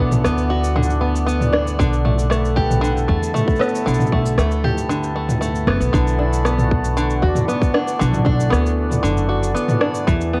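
Folktronica with an intimate, autumnal mood, this clip from a longer piece sets a fingerpicked open-back banjo's twangy, plunky arpeggios, treated with cassette tape, analog delay and plate reverb, over reedy, airy accordion chords and a woody, thumpy pizzicato upright bass. An organic electronic drum kit of cabasa, rim click and toms plays from 0.1 s, and a tight electronic kick joins at 1.8 s, both re-recorded in a large room. A band accent at 5.7 s leads into a new section, all captured as a home cassette recording with a moderate booth ambience.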